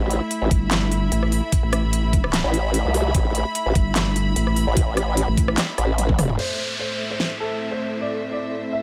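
A chaotic, heavy half-time dubstep drop at 148 BPM in A minor opens with softly bowed, pumping strings beneath an overdriven, chorused, detuned pulse-and-sine formant-sweep wobble bass, joined at 0.5 s by a second overdriven, chorused wobble bass, a nasal, dark vowel sweep. Meanwhile, a big-room dance kit with a huge snare and crisp hats and a knocking electronic kick play until a drum fill gives way at 6.4 s to a mellow, deep-voiced grand piano with tape echo and an up-front downlifter, joined from 7.1 s by an ethereal, airy pad with a slow attack and long release.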